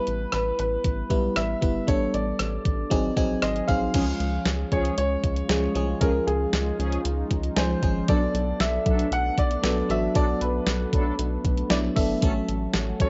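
A straight 4/4 pulse at 116 BPM comes from a clean, up-front 12-bit drum machine with a thumpy kick, fat snare, hi-hat, rim click and crash, joined by a rubbery, bouncy square bass, setting a glossy, uplifting 1980s-style pop groove in this cut from a longer piece. A polished grand piano carries the melody through analog delay over glassy, bell-like FM electric piano chords treated with chorus, phaser and cassette tape, which play a short fill at 2.9 seconds. Round, detuned synth brass stabs arrive at 3.9 seconds and a very quiet, swirling phased pad joins at 4.6 seconds, all caught with light reverb on a home cassette recording whose dull top end gives it a soft, homemade sheen.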